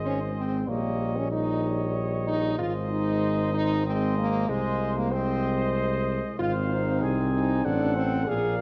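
A punchy, mellow tuba anchors this stately classical brass quintet passage in Ab major at 95 BPM in 3/4, with a clear French horn joining up front at 0.1 s. Above them, a close-miked trumpet carries the melody with light vibrato and a soft attack, joined by a distant flugelhorn on a second line and a roomy trombone accompaniment sitting in the background. A dark production and moderate scoring-stage reverb give this fragment of a longer work a rich glow as the harmony moves from Ab through Eb7/Bb and Fm7/Ab to a closing Am6.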